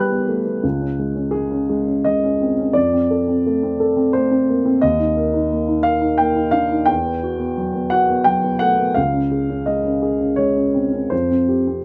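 Close, detailed microphones and light reverb frame a dark, mellow, boxy grand piano, up front and playing solo, in this reflective, wistful neoclassical minimalist fragment of a longer piece, moving in a rubato 3/4 around 86 BPM through shifting chords such as Emadd9, Dbsus2 and F across a range from Db2 to F#6.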